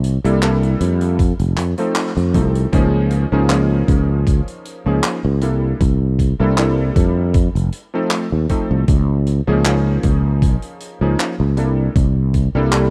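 A lightly swung 78 BPM groove in 4/4 opens this nostalgic, faded vaporwave fragment, with a big acoustic rock kit of handclaps and hi-hat joined at 1.2 seconds by a thumpy, overdriven electronic kick that sounds re-recorded in a large room, and the band hits a brief accent at 2.0 seconds. Up front, a bright, growly fretless electric bass sustains low beneath a vintage electric grand piano with a clangy low end and short sustain, its chords soaked in analog chorus and tape echo as the harmony cycles through C13, F7 and Db69. The whole thing has the rough feel of a cassette home demo, and the clip is cut from a longer piece.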